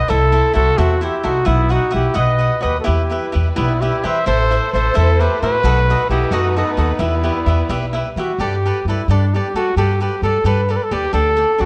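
A dark production sits in a moderate recital hall reverb, giving this short festive, proud mariachi fragment of Mexican folk music a rounded glow. At 88 BPM in a rubato 6/8, a classical-style lead trumpet carries the melody up front, while a clear, distant second trumpet with light vibrato traces a roomy line in the background until 7.9 seconds. An up-front upright bass, woody and plucked pizzicato on steel strings, anchors the low end, and a crisp acoustic cavaquinho adds picked accompaniment throughout. A lush bowed violin section with vibrato and a soft attack enters at 2.9 seconds, holding expressive sustained chords from a distance. The harmony moves from E harmonic minor through Em, Am and B7, then turns to G major at 8.4 seconds with a Gadd9 chord before settling on Dsus4.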